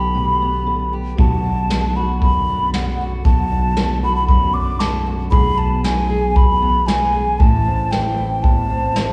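A mellow, airy clay ocarina carries the melody from the start, close and expressive with tongued notes and vibrato. Beneath it are a fingerpicked steel-string acoustic guitar and a growly, sustaining fretless electric bass treated with ensemble chorus, and both the ocarina and the guitar carry a slapback echo. At 1.2 seconds a vintage brush drum kit joins with a boomy kick and a medium-tuned snare, sounding distant and roomy, as this wistful, intimate folk passage, cut from a longer piece, unfolds in small room ambience and the recital hall reverb of a live gig heard through the venue's PA.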